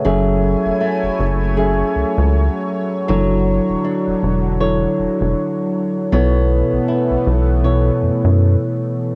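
Moody and sensual, this brief contemporary R&B passage with a gentle sixteenth-note swing sets a mellow, up-front tine electric piano over a rubbery, hollow square-wave bass with a dark, bouncy pluck, while a lush, detuned sawtooth pad with chorus and phaser holds slow-blooming chords and a fingerpicked flamenco guitar, its finger squeaks audible, plays arpeggios through analog delay, the keys, pad and guitar carrying a cassette-tape tint in a lightly reverberant home recording that moves from F#m9 to Dmaj7 to B9sus4.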